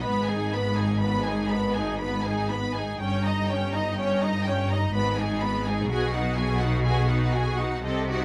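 Close, detailed microphones and light reverb capture this serene, slow romantic movement for string orchestra in 3/4 at 59-65 BPM with a rubato feel: a focused violin section carries the melody over a smooth second violin line, lush violas, cellos with light vibrato and distant double basses, all bowed through chords moving from G#m to D#7/G and on to G#m7/B across this 8.2-second passage cut from a longer piece.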